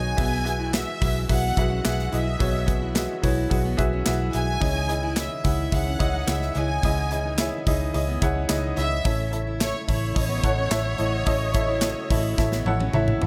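Piano-driven pop at 108 BPM in 4/4 with a straight, driving and dramatic feel, built on a bright, woody upright piano that sounds slightly worn and detuned, sitting up front beside a punchy modern studio drum kit with handclaps and toms, and a dark, round, foam-muted electric bass. A lush bowed violin section carries the melody with vibrato and tape echo. A picked parlour acoustic guitar plays a riff in the background from 0.2 seconds, and a very quiet, reedy tonewheel organ holds chords through a slow rotary speaker with key click, all in light small-room reverb, before a drum fill at 12.4 seconds closes this cut from a longer piece over the changes from Eadd9/B to C#madd9 to A.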